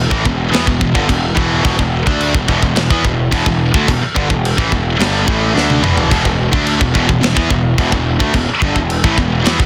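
A dense, heavily limited modern master in a small room puts a bright, double-tracked high-gain guitar riff up front, running from E2 to D4 in E minor at 108 BPM in a straight 4/4. A growly, fuzzed picked bass sits beneath it from E1 to E2, while a tight, saturated acoustic kit with a gritty, rolled-off top drives the kick, snare, toms and china cymbal, breaking into a drum fill at 5.6 seconds. This relentless, heavy metal passage is cut from a longer piece and stays on an E minor chord throughout.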